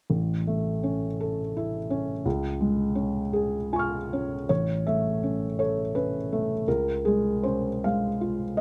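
Close, detailed microphones and a light reverb place a felt-muted upright piano up front, its tone soft and mellow in this peaceful, intimate fragment of neoclassical minimalist piano. Playing solo from 0.1 to 8.6 seconds in a slow, rubato 6/8 at 55 BPM in dotted quarters, the piano spans A1 to E#6 and moves between A and C# chords. That progression returns unchanged when the second half begins at 4.5 seconds.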